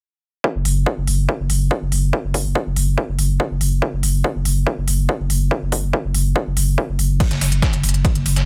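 The recording has a light reverb and a punchy, up-front low end, cut from a longer piece of driving peak-time techno in straight 4/4 with an industrial, relentless mood. An electronic kick drum, layered and high-pass filtered with studio reverb, starts at 0.4 seconds, and a saturated sub bass joins almost at once, deep, thick and sine-like with a fast attack, overdrive, a low-pass filter and sidechain pumping. A techno drum kit adds crash cymbal and smooth hi-hats, both pumping against the sidechain and set in studio reverb. At 7.2 seconds the arrangement shifts into a new section as a dusty soul sampler-style drum kit enters with a gritty, compressed ride cymbal and a medium-tuned snare, each high-pass filtered, sitting low in the mix.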